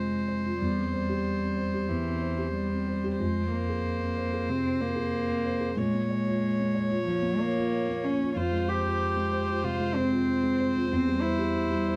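Rubato in 4/4 at 93 BPM, this fragile, melancholic neoclassical fragment in F harmonic minor places a soft, intimate felt-muted upright piano up front alongside a close, sul tasto cello carrying the second line with light vibrato and an airy bow, while a single viola adds a rich, floating bowed tone in a narrow high register, set in light reverb and a dark production as the chords move from F5 and C/E through Fm and Bbm7, then back to Fm and C/E before the 12-second cut.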